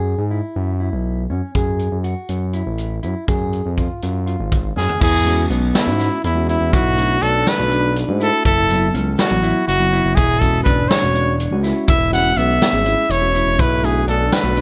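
Progressive instrumental band music in a driving, brooding 7/8, cut from a longer piece, opens with a dark, clean fingered electric guitar playing arpeggios over a smooth, gliding sawtooth synth bass with vibrato and portamento, while a roomy, distant big-band drum kit with a punchy kick joins at 1.6 seconds. With a drum fill at 4.8 seconds, a bright, jazz-style trumpet solo with light vibrato and digital delay takes the lead up front, and a mellow tine electric piano settles in the background as the chords move through E, Bm and F#m7. Light reverb gives the whole band a sense of space.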